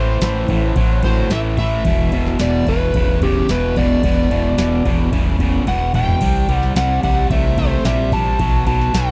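A straight 4/4 groove at 110 BPM drives this smoky, heavy fragment of blues rock power trio and southern rock in E minor, with a booming analog drum machine entering at 0.2 seconds, its deep kick and crisp snare joined by crash, ride and toms, plus a fill from 5.7 to 6.2 seconds. A bright, double-tracked distorted electric guitar sits up front with a low riff while a growling fingered bass adds overdriven weight, and a dark overdriven slide guitar carries the melody from G4 to A5 over chords moving from Am through E5, C5 and B5. The sound is dry and close, in the manner of a 1970s studio, with little reverb.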